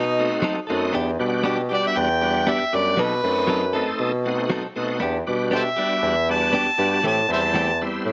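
A light reverb and small-room ambience give this brief cut from a longer blues piece a close, smoky feel, and the mood is brooding. Up front, an amplified, overdriven harmonica carries the melody with a gritty edge, light vibrato, tongue slaps and scooped notes in a jazz style, and it takes a solo from 5.0 seconds as the harmony moves from Em7 to Am7. A bright tonewheel organ fills in the accompaniment with a full, shouting tone, audible key click, light overdrive, chorus vibrato and a slow rotary speaker. Beneath them, a mellow bassoon plays the bass line in a classical style, distant and roomy with its own light vibrato. From 0.4 seconds, a direct-recorded clean electric guitar adds picked, compressed stabs colored by a warbly pitch drift and digital delay, over straight-feel changes that circle between B7b9 and Em7.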